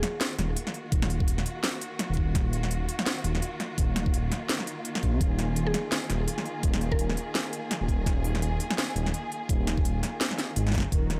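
A deep, rumbling detuned saw bass, saturated and up front from 0.4 s, anchors this dark, spacious half-time drum and bass excerpt in Eb minor at 168 BPM, where a knocking electronic kick and a kit of cracking snare and crisp hats in a small room ride a swung groove beneath a rich, bowed string section holding an Ebmadd9 chord with sidechain pumping, while a woody, round mallet-like synth pluck with chorus and tape echo sits in the background, briefly at the start and again between 5.7 and 7.3 s, and a mellow, pulsing gated texture appears at 10.9 s, all set in a digital ambience.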